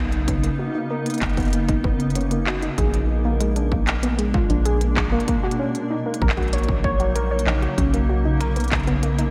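Glitchy and playful, this short IDM passage, cut from a longer piece, floats in a dreamy mix soaked in lush hall reverb. A granular cloud pad holds blurred, evolving chords beneath a lo-fi, warbling pluck that spins arpeggios through chorus and a diffuse ambient delay, its detuned sawtooth tone kept mellow. Up front, a rubbery square bass bounces with a hollow, resonant, dark character. An industrial drum kit of finger snaps, handclaps and crisp hi-hat enters at 0.1 seconds, trailed by its own ambient delay, while a heavy electronic kick arrives at 0.3 seconds and drops out at 8.8 seconds, both sounding re-recorded in a large room. The harmony moves from Bmaj9 through A#7b9 and D#m7 before settling back on Bmaj9, with the pad's vintage 12-bit sampler grit adding a dusty edge.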